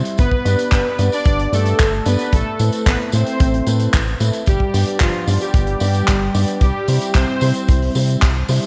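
A bright, 1980s-style digital production with vinyl crackle and light small-room reverb frames this melodramatic, bittersweet italo disco excerpt at 112 BPM, where a fat, detuned analog synth brass melody with chorus and delay rides over a punchy kick, a round, deep analog bass, stabs from a dark, boxy concert grand piano with subtle chorus, and an airy, polished drum kit of handclaps, hi-hat and tambourine treated with gated reverb, moving through G, Amadd9 and C.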